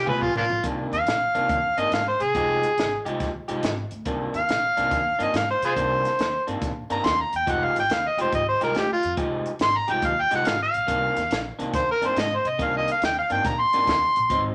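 A compact cocktail kit opens with a short drum fill, its punchy kick and high-tuned snare sounding dark and smooth, before an up-front, gritty overdriven harmonica takes a mournful, brooding jazz-style solo from 0.6 seconds, full of vibrato, tongue slaps and scooped notes, over a slightly broken-up, lo-fi picked riff on electric guitar through a small old amp and woody pizzicato upright bass in this 141 BPM C minor electric blues shuffle, all set in a moderate studio reverb.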